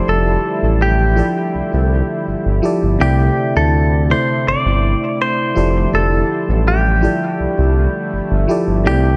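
Smooth and tender, this R&B excerpt moves at 82 BPM in a straight 4/4, passing from Fmaj13 to C69 at 3.0 seconds and back to Fmaj13. A bright, twangy clean electric guitar carries the melody up front with dub echo, while a glassy, bell-like FM electric piano with chorus and dub echo plays the accompaniment, and a detuned analog pad with chorus and tremolo holds sustained chords in the background. A sawtooth-and-triangle synth bass enters at 0.1 seconds and sits up front in an echo-heavy mix with light reverb and digital ambience.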